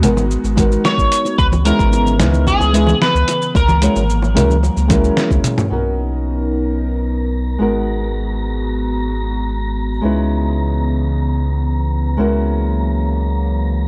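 Sunset chillout in G# minor at 111 BPM, this wistful, smooth excerpt from a longer piece moves through G#m7, C#m7 and F#7 before its second half opens on Bmaj7 and cycles back through G#m7, C#m7 and F#7/C#. A dark, thumb-plucked flamenco guitar with tape echo carries the accompaniment throughout, resting on a breathy, detuned pad with chorus and a round, up-front sub bass. For the first 5.7 seconds a gritty, compressed sampler-style kit with a fat snare, hi-hat, shaker and toms drives the groove alongside a deep, overdriven electronic kick and ringing congas and bongos in the background, closing with a drum fill. Over this, a slightly broken-up electric guitar with analog chorus and tape echo plays a short melody between 0.9 and 5.1 seconds. After 5.7 seconds the beat falls away, and from 6.2 seconds a faint, wind-like tuned noise texture with its own reverb floats high above the guitar, pad and bass, all captured with a dry, cassette-tape grit.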